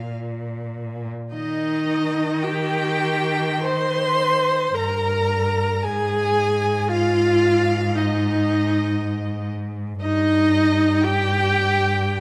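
An up-front viola, warm and expressive with vibrato and portamento, carries the accompaniment in this slow, lyrical excerpt from a romantic classical movement for string quartet in Eb major, moving with rubato at 48-60 BPM in 4/4. Two bowed violins sing high above: one rich and focused on the melody, the other smooth and even on a second line. A clear, focused cello, also up front, holds the bass with vibrato. A Bb5 sounds at the opening, the harmony settles on Eb at 1.3 seconds, an Ab5 arrives at 5.8 seconds, and the harmony reaches Eb/G at 10.0 seconds, all within the moderate reverb of a scoring stage.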